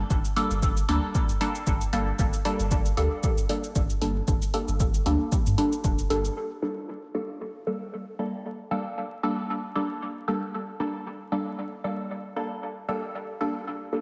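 A punchy analog kick and a light electronic shaker and hi-hat set a swung 4/4 pulse at 115 BPM from 0.1 seconds, giving this cavernous, nocturnal dub techno fragment its steady footing in G minor. Beneath them, a deep, clean sine sub bass holds down the low end with a smooth, dark tone, its tube saturation adding body while sidechain pumping makes it breathe against the kick. Up front, a muted, detuned dub chord stab built from sawtooth and square waves circles a Gmadd9 chord, its short, mellow hits colored by a filter sweep, a phaser, sidechain pumping and trailing dub echo. The drums and bass drop away by 6.3 seconds, leaving the stab and its echoes to carry the second half alone until the fragment is cut off at 14.0 seconds. A lush hall reverb and a soft bed of vinyl crackle soak the mix, giving it a dreamy, submerged atmosphere.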